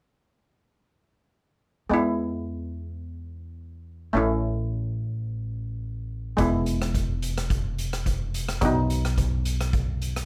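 A lightly reverberant, up-front sound opens this sunny, carefree calypso snippet in E major at 107 BPM, tuned slightly sharp to A4 = 445 Hz. From 1.9 seconds, a shimmering, metallic double seconds steel pan played with hard rubber sticks carries the chords E, A, E and B over a woody, dark pizzicato upright bass on steel strings. At 6.4 seconds an airy, polished street-band drum kit joins with hi-hat, rim click and a boomy kick.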